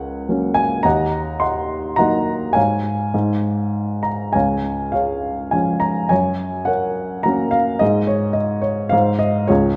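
This classical piece for solo piano is a lyrical, hopeful fragment lifted from a longer work, lasting about 9.8 seconds. It moves in 3/4 at around 104 BPM, but the beats are uneven and the phrasing breathes with a free rubato feel. The lone upright piano sounds dark, woody and intimate, spanning from Db2 up to C6, with the soft clatter of its action plainly audible up close. Set in Db major, the harmony drifts from Gb over Db through Eb minor and back toward Db, touches Gb, pauses on a bare moment at 7.8 seconds, then lands on Ab. A generous recital-hall reverb with a 1.4-second tail gives the close, vintage-toned instrument the airy bloom of a church or concert hall.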